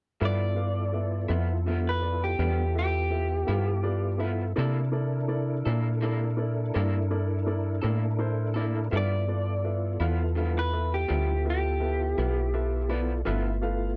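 Swaggering and laid-back, this slow blues in 12/8 moves at 55 BPM in G mixolydian with a straight feel, cut from a longer piece. A slightly broken-up electric guitar through a small old amp carries the picked, compressed lead line from 0.3 seconds. A second lo-fi guitar through a similar amp, with harmonic tremolo, plays accompaniment underneath. A woody, polished upright piano and a clean tonewheel organ with key click, chorus vibrato and a slow rotary speaker fill in the harmony over G13 and C13 chords. Up front, a metallic FM bass with a fast attack and mellow decay anchors the low end. The dry, close recording has a 1970s studio character with little reverb; the lead guitar stops at 12.9 seconds, while the organ and bass hold to 14.0 seconds.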